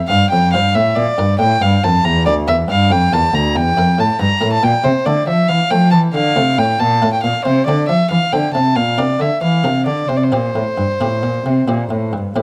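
The violin leads this serene, radiant baroque-style sonata excerpt with a nasal, gut-string tone and airy bow, sitting up front in the upper register over a straight 12/8 at 92 BPM, tuned to A4 = 444 Hz. A dark cello with light vibrato and a smooth top carries the bass beside it, while a buff-stop harpsichord, muted and lute-like, plucks a quieter, dry continuo underneath. Close, detailed microphones and light reverb frame a progression that moves from F through Edim and Dm toward a Csus4 resolving to C at 11.5 seconds.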